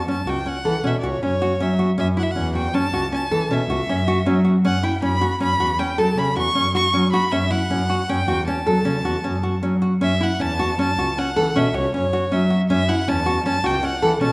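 A rich, focused bowed violin carries the melody with vibrato and a slightly boxy edge, singing high above a bowed double bass that holds a smooth, even line. A warm, fingerpicked classical nylon-string guitar enters at 0.1 seconds with arpeggios, shifting from F#m7 to Aadd9 at 4.6 seconds and back at 10.0 seconds. This pensive, hypnotic chamber piece in an uneven 7/4 meter places all three players up front in a wet recital-hall reverb, and the passage is cut from a longer work.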